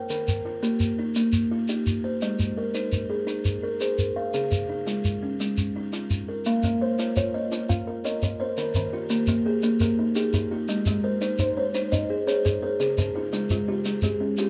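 A light reverb surrounds this mellow, woody recording, an excerpt from a longer southern African traditional piece built on an mbira-style interlocking cycle in 12/8 at 113 BPM, with a straight, trance-like and hypnotic feel in Bb dorian, tuned to A4 = 436 Hz. A buzzing kalimba opens at 0.0 seconds with up-front arpeggios from Db3 to G5, its fingertip plucks ringing and airy with a hollow-box body and a tape echo trailing behind. A shekere joins at 0.1 seconds as grainy, compressed and saturated percussion, sitting close in the mix alongside the buzzing kalimba. At 6.6 seconds a second kalimba adds softer, short arpeggios from Db3 to F5, its band-limited, vintage tone also carried by tape echo. The harmony circles through Eb, Ab and Db, then Bbm, Eb, Ab and Db as the cycle repeats, all three parts continuing together to the end of the clip at 14.5 seconds.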